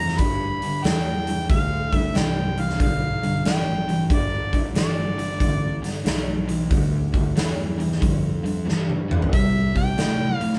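A mellow, overdriven harmonica plays a vintage, jazz-style solo melody with light vibrato over a bright, double-tracked guitar riff and a fuzz-laden picked bass in this swaggering, gritty blues rock and southern rock clip with a swung feel. A huge arena drum kit joins at 0.1 seconds, its punchy kick and medium-tuned snare sitting up front in a big, natural room, and a drum fill at 8.7 seconds leads the harmony from G to C at 9.3 seconds. The power trio sounds like it is playing live together in one room, touched with light reverb.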